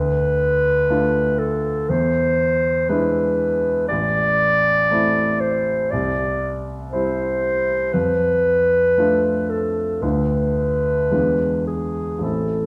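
Set in a recital hall with a reverberant, dark and warm production, this short romantic duo for clarinet and concert grand piano is an excerpt from a longer piece. The mood is yearning and solemn, moving in 4/4 with a freely breathing rubato. A mellow clarinet carries the solo melody in a classical style, sitting up front yet sounding distant and roomy, its line staying within a narrow middle range. Beneath it, the clear grand piano supplies the accompaniment, also up front, with an open tone and deep bass that reaches far down the keyboard. The harmony drifts through Dm, E7, Am, C and F6 before darkening on Bm7b5/D and coming to rest on an unresolved E7b9 at 11.1 seconds.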